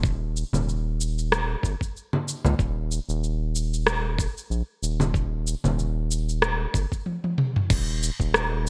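Organic downtempo in Eb major at 94 BPM, this earthy fragment of a longer piece rides a lightly swung 4/4 groove. An up-front electronic kick with overdrive sounds gritty and thumpy. Beside it, an organic electronic kit of congas, cabasa, rim click, toms and crash cymbal has tape-warm hits re-recorded in a large room and shaped by gated reverb, with a drum fill from 7.1 to 7.7 seconds before the kick stops at 8.3 seconds. Underneath, a round analog bass blends square and sine tones, wave-folded and mellow, and holds sustained notes with sidechain pumping, while the mix carries light reverb and a bright 1980s-style digital sheen.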